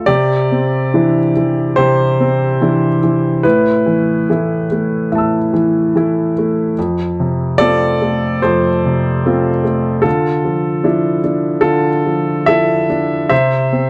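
Unhurried and rubato in a gentle 4/4, this peaceful, intimate neoclassical minimalist excerpt features a lone upright piano, woody and up front with audible action noise and long sustain, moving through Cadd9, Asus2, F and Dmadd9 before settling on C at 13.3 seconds, all in light reverb and tuned slightly bright to A4 = 442 Hz.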